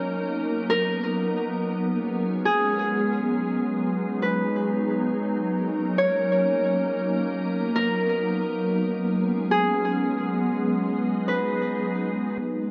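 A glassy, warbling FM pad and a ringing, fingerpicked Celtic harp open together in this hazy, ethereal hip hop fragment, which floats in free time. The vintage pad sits up front with slow-attack sustained chords thickened by ensemble chorus, while the harp melody, softened by a low-pass filter and trailed by delay, plays over a repeating cycle of Bmaj7, Db7sus4, Abm7 and Ebm7. A long plate reverb soaks the mix in a dreamy wash until the passage is cut off at 12.7 seconds.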